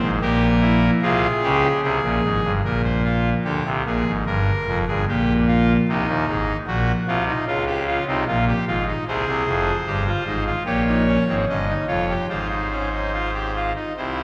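A pipe organ on its trumpet stop carries this contemplative yet driving baroque-style three-part fugue alone, its brassy, bright voicing and crisp chiff sitting up front across a span from F1 to Eb5. In F minor at 74 BPM in a straight 4/4, the harmony moves from C7 and Fm/C through Bb7, Ab7, Db and Gdim before settling on Fm/Ab, with a new section starting at 2.6 seconds. A wet church reverb with a 2.6-second tail places the listener further back in the room, and the 14.2-second excerpt is cut from a longer piece.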